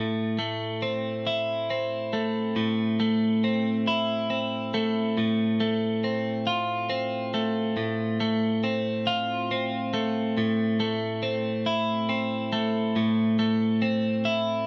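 A brooding, cinematic rock excerpt in a slow 6/8, carried entirely by a solo twelve-string electric guitar that sits up front with a clean, picked, compressed tone. The guitar moves from A minor to F over A at 5.2 seconds and back to A minor at 10.4 seconds, forming a build-up across the whole 14.7 seconds. The recording has the feel of a band playing live in one room, with a moderate studio reverb around the guitar.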